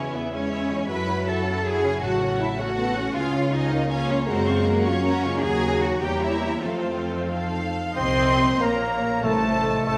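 A wet scoring-stage reverb surrounds this stormy, urgent classical passage in 6/8, cut from a longer piece, moving with rubato at roughly 89-107 BPM in dotted quarters and settling into Bb minor from 3.2 s. A clear, intense violin section carries the melody over a second, softer-edged violin line, while background violas, dark distant French horns holding sustained chords, a bright ringing thumb-plucked harp in arpeggios, a close, expressive cello section with portamento, and focused double basses fill out the lush, vibrato-rich string body. Near the end, a pure, very quiet flute section enters at 7.3 s, a vintage-toned clarinet, a roomy oboe and a bassoon join at 8.0 s, and articulate hard-mallet timpani strike briefly at 9.2 s.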